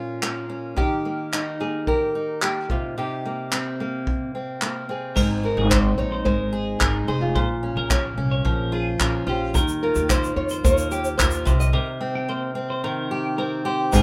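This carefree, heartfelt acoustic pop fragment opens on an up-front fingerpicked steel-string acoustic guitar with audible finger squeak, quickly joined by a roomy brush drum kit with a punchy kick, dark crash cymbal and handclaps, and then a small, dark nylon-string guitar carrying the melody; at 5.2 seconds a woody, thumpy pizzicato upright bass on gut strings and a bright, twangy, compressed twelve-string electric guitar playing clean picked arpeggios arrive, a grainy tube shaker adds texture from 9.5 seconds, a break follows at 11.7 seconds, and a moderate spring reverb lends the whole a soft vintage sheen.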